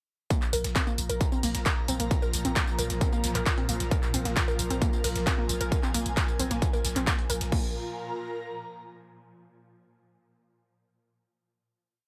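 Hypnotic and driving, this short peak-time techno piece at 133 BPM in 4/4 sets an overdriven, distorted four-on-the-floor kick up front against a growling, buzzy 808-style bass rumbling between the kicks, a warbling lo-fi pluck riff looping a 5-step sequence that drifts against the bar with chorus and delay, programmed techno hats, claps, tambourine and crash with sidechain pumping, a very quiet gritty sampler-style breakbeat with a fat snare, a swarming granular drone in the background, and an airy, breathy pad of slowly shifting chords that sustains alone from 7.7 to 9.3 seconds for the final chord.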